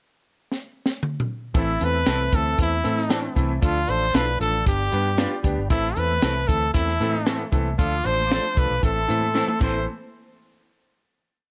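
Passionate and urgent, this short uptempo 1960s-style soul piece in A minor at 115 BPM opens with a fill on a compact cocktail drum kit with a punchy kick and high-tuned snare, then a forceful, vibrato-laced trumpet carries a motif-based melody up front over a round, foam-muted fingered bass line, eighth-note drop-2 chords on a baby grand piano, a soft, flute-like tonewheel organ pad through a slow rotary speaker, twangy backbeat guitar chops from a small old amp, and very quiet, ringing congas that join at 5.7 seconds, with little reverb before the closing hit at 9.9 seconds.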